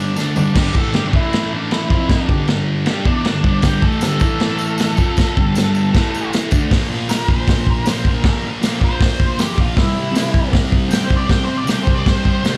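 Up front, a thick, double-tracked fuzz guitar drives a swaggering, raw garage rock riff at 156 BPM in a straight 4/4, while an octave-fuzz lead guitar with slapback echo carries the melody above it and takes a solo from 6.7 seconds to the close. A vintage acoustic drum kit, punchy in the kick with dark cymbals and a rolled-off top, opens with a quick fill at 0.2 seconds and then keeps crash, hi-hat, snare and toms going throughout. A jingly, bright tambourine sits in the background, returning at 3.6 seconds after a brief first touch. The chords move among G5, A5 and F5 before reaching D5, then shift to Bb5 as the solo begins and settle on C at 9.8 seconds. Heard as a live gig through the venue's PA with a light club reverb, this cut from a longer piece has a gritty, fuzzed-out energy.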